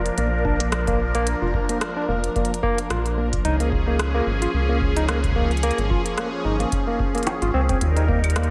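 IDM at 110 BPM with a gentle 16th-note swing, this wistful, intricate excerpt drifts through Bb, Db and Eb chords under a dreamy wash of plate reverb. A swirling, detuned analog pad with phaser and chorus holds sustained chords over a rubbery, hollow square bass driven by tube saturation and sitting up front, while a barky tine electric piano spins clean, delayed arpeggios from 0.2 seconds. An organic electronic kit of claves, smooth hi-hats and rim clicks with tape echo joins at 0.1 seconds, and a deep analog kick enters at 0.5 seconds.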